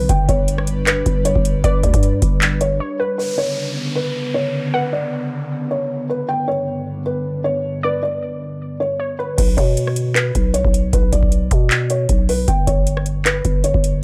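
Dark and hard-hitting, this half-time trap cut at 155 BPM in B minor opens with a felt-muted upright piano carrying the melody, its boxy, intimate tone full of audible action noise, over an airy pad and a warbly, lo-fi pluck with chorus and delay, while an overdriven analog drum machine and a growling 808-style bass hit up front. After a break at 2.8 seconds, the beat drops away and a downlifter sweeps through as the piano, pad and pluck move between G and Bmadd9. The drums and buzzy 808 return at 9.4 seconds, deep kick and metallic hats punching under the piano in light digital ambience.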